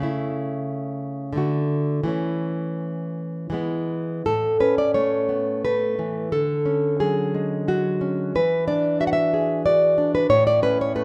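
A nylon-string classical guitar plays alone, fingerpicked and up front, its fresh strings giving a dark, full-bodied tone in this tender, nostalgic romantic piece in A major. The 3/4 pulse moves with a rubato feel between 81 and 94 BPM, passing through chords such as D, Dmaj7 and E9 before settling back on A at 10.3 seconds. A moderate recital hall reverb surrounds the instrument in this short cut from a longer work.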